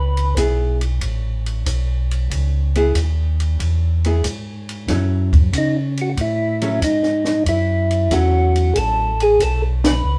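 An easy swung 4/4 at 93 BPM drives this bluesy, smoky soul jazz organ trio excerpt, where a mellow tonewheel organ bass with key click and vibrato runs throughout, a percussive third-harmonic organ melody sounds briefly at the start and returns from 5.6 seconds, a dry compact cocktail kit with dark cymbals, a high-tuned snare and punchy kick plays up front, and a picked, compressed hollow-body archtop guitar comps along, all through slow rotary speaker on the organs and a moderate live-room reverb, over C#m7 moving to F#m7 before a band accent at 9.7 seconds.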